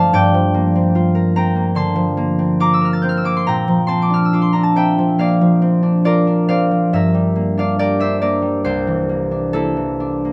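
Close, detailed microphones and very little reverb keep the recording dry and up front, so every ringing, fingerpicked note of the solo concert harp comes through clearly, spanning C2 to A6 over this 10.3-second excerpt from a longer piece. The classical music is mysterious and wistful, moving in a rubato 4/4 at roughly 62-74 BPM in G dorian, tuned to A4 = 439 Hz. Its harmony drifts from Gm11 through Bb69 and Gm6 to a C9 at 8.6 seconds.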